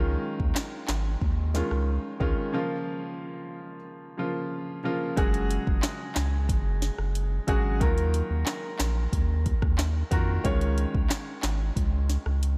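Sunny and bouncy, this short dancehall excerpt in F# major moves at 91 BPM in a straight 4/4, with a clear, intimate baby grand piano sketching chords like C#add9, A#m and D#madd9 over a deep, round sub bass that sits up front from the start. At 0.4 seconds an electronic afro-pop drum kit joins with a deep kick, sharp snare, metallic hats, handclaps and rim clicks. There is a break from 2.5 to 5.2 seconds before a new section begins, the piano's audible action noise lending a natural touch inside a light digital reverb.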